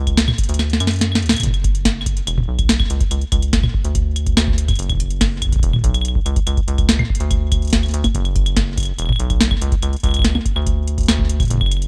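A rubbery square-wave bass opens this short cut from a longer IDM piece, sitting up front with a hollow, nasal bounce, a quick filter pluck and a touch of tube saturation as it moves between E1 and F#2. Almost at once a booming analog drum machine joins with claves, metallic hats, a tonal snare and toms, its hits trailed by delay, alongside a deep electronic kick. The mood is intricate and glitchy, driven at 143 BPM in a straight 4/4. Between 0.6 and 1.4 seconds the kick drops out for a drum fill before the groove resumes and runs to the end. The mix is dry and rough, with the feel of a home demo.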